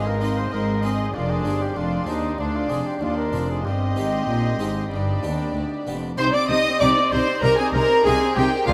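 A straight 4/4 pulse at 96 BPM drives this stormy, baroque-style concerto movement in C minor, taken from a longer piece, where a punchy, distant trumpet and a violin section with period gut-string tone carry the melody over a second violin line of rich, smooth sound. Beneath them, a brilliant Italian-style harpsichord and a reedy viola section fill in the accompaniment, while a nasal cello section and a double bass section anchor the bass. The harmony moves from Ab through Fm13 and G before settling on C minor at 6.2 seconds, all bathed in a vast, echoing cathedral reverb.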